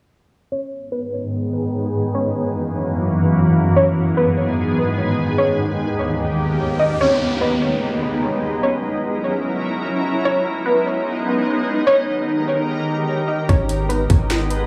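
Echo-heavy and spacious, with a springy small-room haze, this short cut of melancholic, atmospheric cloud-rap sits at 148 BPM in a half-time 4/4 feel in G# minor, tuned to A4 = 436 Hz. A warbling, lo-fi pluck carries the dark, detuned melody through tape echo and a filter sweep over a shimmering, ethereal pad of slow-attack sustained chords that pump with sidechain compression, while an electronic riser and downlifter pass through from 6.3 to 10.2 seconds. Only at 13.5 seconds do a deep, mellow 808-style bass and an up-front trap kit arrive, with a hard-clipped kick, sharp snare and metallic hats.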